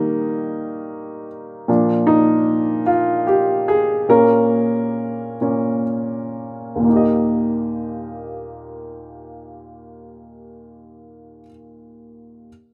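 A rough home demo mix with a moderate plate reverb surrounds a woody, up-front upright piano in this slow, swaying pop piece in 6/8 and Eb major, moving at about 38-52 BPM in dotted quarters. The piano plays alone through a romantic passage over Eb, Bb and a darker Bb minor, slowing down from 1.7 s until a new section returns to Eb at 6.9 s. Its warm accompaniment spans Eb2 to Eb5 in this clip cut from a longer piece.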